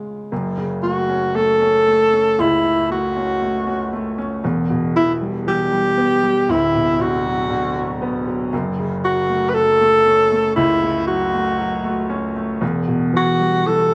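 Melancholic and heartbroken, this slow pop excerpt moves at 59 BPM in a straight 4/4. A concert grand piano opens at 0.0 seconds as accompaniment, its clear, intimate tone reaching down into deep bass, with the noise of its action audible up close. At 0.8 seconds a mellow alto saxophone takes the solo melody in a pop style, its vibrato and smooth top sitting up front and slightly louder than the piano. The harmony drifts from F#m through Em and Bm/D before returning to F#m and Em, keeping the mood aching and unresolved. Light reverb and a small room ambience lend the sound a close, polished feel.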